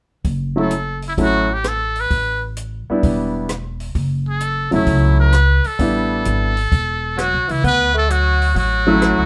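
Small-group swing and bop jazz at 130 BPM in 4/4, with a relaxed, warm mood and a swung eighth-note feel, tuned slightly flat of standard pitch. An up-front, woody upright bass and a compact cocktail drum kit open at 0.2 seconds, the kit dry and natural with a punchy kick among its hi-hat and rim clicks. From 0.6 seconds a trumpet with a metal mute carries the melody, its tone brilliant yet buzzy and thin with light vibrato, while a clear, smooth grand piano with a vintage character comps through the F#m7 and A9sus4 changes. At 7.2 seconds a clear alto saxophone enters as a distant, roomy second line with vibrato, just before the harmony moves to Dmaj7. Light reverb frames the group in this short cut from a longer piece.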